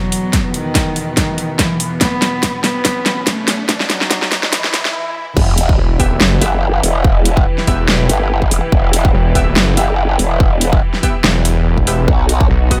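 A nasal, woody solo cello with vibrato and portamento carries a dark melody through a digital delay over biting, pumping background strings, while a high-passed digital ambience, a very quiet riser, swell and sub drop, a punchy, tape-warm electronic kick, and tape-warm dubstep drums with a huge snare and metallic hats build a menacing half-time swing. At 5.4 seconds the drop hits, the cello gives way, and two up-front basses take over: a wobbling, formant-filtered growl bass with chorus and a snarling, distorted sawtooth bass with a moving notch. Bold, ring-modulated orchestra-hit-like synth stabs with delay and reverb punctuate this heavy dubstep passage as the harmony shifts from E minor to B near the end.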